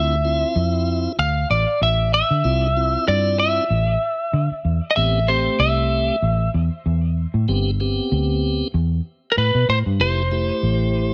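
A slightly broken-up lead guitar carries the melody alongside a tonewheel organ and a fingered electric bass, all three playing throughout this fragment of a longer piece. The mood is mournful and brooding: a straight-eighth soul blues with a light swing on the sixteenths. The picked, compressed guitar sits up front and stays in a narrow upper register. The organ fills in the middle with a piping, scooped tone, key click and light overdrive, turning through a slow rotary speaker. The growly, foam-muted bass is amped and up front, the loudest of the three, while light reverb surrounds the group as the chords move from Dm7 to Am7 at 5.0 s and reach Fmaj7 at 10.0 s.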